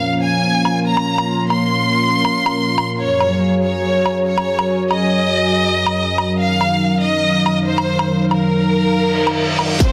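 Heavy wobble dubstep in a half-time 4/4 feel at 141 BPM, this menacing fragment of a longer piece moves through Bbm, Gbadd9 and Ebmadd9/Gb. A rich chamber violin section carries the melody up front, bowed with expressive vibrato and trailed by dub echo. It sits over a thick, detuned unison pad of sawtooth and square waves whose chorused chords pump with sidechain. Deeper in the mix, a lo-fi, nostalgic tape-like pad warbles with its own built-in reverb. Electronic woodblock and bright hi-hats enter at 0.7 seconds, layered and low-pass filtered, and a reverse cymbal and riser arrive at 9.1 seconds before a distorted electronic kick lands at 9.8 seconds. A lush hall reverb bathes the sound, and the master is dense and heavily limited.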